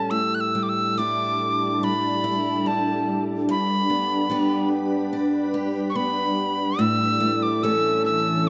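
A tin whistle carries the melody up front, its airy tone marked by a crisp, chiffy attack and vibrato as it moves between A5 and F#6. This is a tender, pastoral Celtic slow air in A mixolydian, played rubato around 71 BPM in 4/4, and the recording is a short excerpt cut from a longer piece. A picked steel-string acoustic guitar sits close beside the whistle, bright and detailed, with audible finger squeak as it accompanies from G2 to A4. From 0.8 seconds a shimmering ambient pad joins with slow-attack sustained chords, its detuned, granular texture lifted by an octave-up shimmer, chorus and its own reverb. The harmony moves from A7sus4 through G to A, and close microphones capture the parts within a moderate scoring-stage reverb of about 1.7 seconds.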